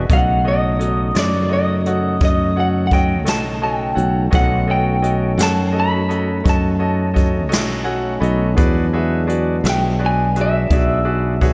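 Laid-back and soulful, this slow blues excerpt sways in 12/8 at 57 BPM, resting on a B9 chord before moving to E9 at 8.6 seconds. A slightly broken-up electric guitar through a small old amp carries the melody with a warbly pitch drift and slapback echo, while a bright concert grand piano with its own slapback echo accompanies and adds a brilliant fill at 7.5 seconds. Underneath, a direct, up-front fretless bass, a very quiet tonewheel organ holding clean sustained chords, and an acoustic brush kit with a boomy kick all sit in a lush hall reverb that gives the whole a big arena sound.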